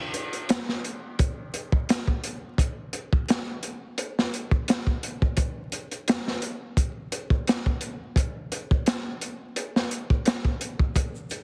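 A heavily compressed, radio-like sound with vinyl crackle and a light studio reverb frames this brief cut from a longer trip hop piece, brooding and dark in mood. At its centre is a crunchy breakbeat drum kit of hi-hat, kick and snare, running from 0.1 seconds to the close and sitting up front in the mix. The kit is saturated, gritty and warm, mid-forward with a rolled-off top, pairing a tight kick with a medium-tuned snare recorded in a studio room. The 4/4 groove moves at 86 BPM and carries a light swing on the sixteenths. Near the end, at 11.0 seconds, a ringing egg shaker played with hard hands slips in, close-miked yet tucked into the background.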